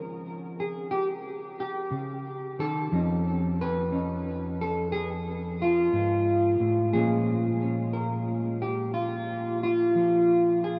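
A dark, clean hollow-body electric guitar plays alone from the first moment, fingered and up front, in this late-night solo jazz excerpt in F minor at a slow, swinging 60 BPM, tuned to A4 = 435 Hz. Lush chorus and tape echo color the guitar as it moves through Dbmaj7, F7alt and Bbm7, with the altered chord arriving at 2.9 seconds. The whole dreamy mix is soaked in a huge ambient reverb with an 8.6-second tail, and the fragment breaks off at 10.8 seconds as if cut from a longer piece.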